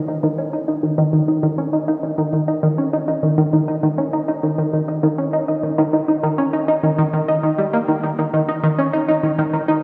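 Ambient piece at 100 BPM in 4/4 with a straight feel, expansive and hypnotic, cut from a longer work. A single tight sequenced synth plays alone from 0.1 to 9.8 seconds, its detuned sawtooth tone shaped by a filter pluck with a fast attack, carrying chorus and tape echo as it sits up front between Eb3 and Eb4. The dreamy mix is soaked in a lush hall reverb with a 2.9-second decay and studio ambience.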